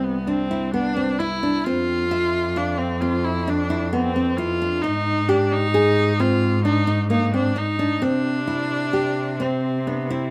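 Set in an uneven 7/4 meter with a straight feel, this short excerpt from a longer piece of contemporary chamber music sounds shimmering and restless. A fingerpicked nylon-string guitar spins arpeggios with a deep, classical tone, spanning the broadest range of the three parts. Beneath it, a single muted cello, bowed con sordino and placed up front, carries the bass line in a dark, veiled voice touched with light vibrato. A solo viola, also bowed and close, sings a focused second line with clear vibrato that sits above the cello. The harmony moves from Cadd9 through F5 and Ab5 before settling on C at 8.0 seconds, and a light reverb gives the trio a gentle sense of space.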